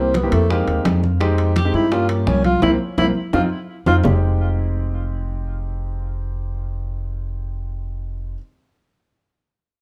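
A straight 4/4 Afro-Cuban jazz groove drives this sultry, cut-short passage, with bright hard-hand congas, round low-tuned bongos and ringing metal-shell timbales set back behind a growly, woody pizzicato upright bass up front. A breathy, mellow tenor saxophone solos intimately with subtone, vibrato and scooped notes, treated with plate reverb and tape echo, while a concert grand piano with audible action noise accompanies over Fm7, Gm7b5 and C7 chords until a band accent and drum fill close the phrase at 4.0 seconds. The saxophone and percussion then fall away, and piano and bass carry on in a dark production until about 8.4 seconds.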